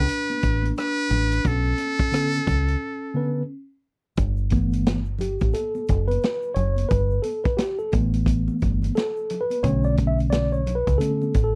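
A buzzy, metal-muted trumpet with vibrato and a ringing soft-mallet vibraphone open this cool, nocturnal jazz-hop piece at 88 BPM with a swung feel, over a round, dark fingered dub bass, a vintage drum kit with a punchy kick, a medium-tuned snare and rolled-off top, and faint, band-limited egg shaker and congas, before the trumpet and vibraphone stop at 3.5 seconds and a mellow tine electric piano, entering at 2.1 seconds, takes a solo from 4.2 seconds over Bm9 and G69 chords in a dry, close 1970s-style studio sound.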